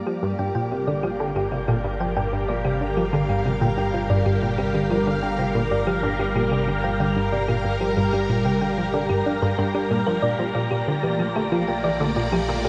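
A straight, steady 4/4 pulse comes from a tight, driving sequenced synth riff with a detuned sawtooth edge, propelling this cosmic, hypnotic stretch of ambient, sequencer-driven space music cut from a longer piece. Alongside it, a swirling, vintage string machine holds up-front sustained chords through ensemble chorus and phaser from the very start, while a round, tine-like thumb-piano pluck spins gentle arpeggios through chorus and delay. A warbling analog drone enters on bass at 1.1 s and an airy, breathy wind-like texture drifts in the background from 3.5 s, the mix sitting in a wet shimmer reverb as the harmony moves from Gm7 to Bbmaj7 at 10.2 s.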